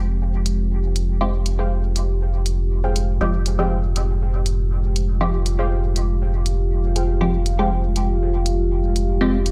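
A dark, close-sounding mix with little room carries this nocturnal, hypnotic dub techno cut from a longer piece, set in F minor at 120 BPM in a straight 4/4 and opening on an Fmadd9 chord. A deep, detuned ambient pad with chorus and its own reverb holds sustained chords under a filter sweep, while a round analog bass with tube saturation sits up front on F1, and an electronic hi-hat with studio reverb enters at 0.5 seconds. From 1.2 seconds a muted, phased dub chord stab with echo cuts through brightly, and a warbling, lo-fi pluck with chorus and dub echo adds a dusty riff between 1.6 and 7.7 seconds.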